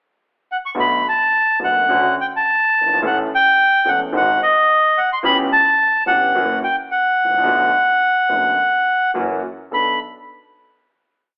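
A narrow telephone-like sound frames this short, complete tango, with a trio playing live in one room and a moderate large-studio reverb. At 108 BPM in 4/4 and B minor, the rubato feel gives it a passionate, melancholic character. The reedy, airy bandoneon enters first at 0.5 seconds and sits up front with a motif-based melody in period phrases. The concert grand piano follows in a milonga rhythm with a warm, open tone, deep bass and long sustain. The bowed double bass joins at 0.8 seconds in the background, clear and biting with vibrato, intense yet smooth on top, also in a milonga rhythm. Over a pickup bar, a single section moving from Bm7 through G#7, C#m7b5 and F#7, and a closing Bm7 chord at 9.7 seconds, the piece feels compact and complete.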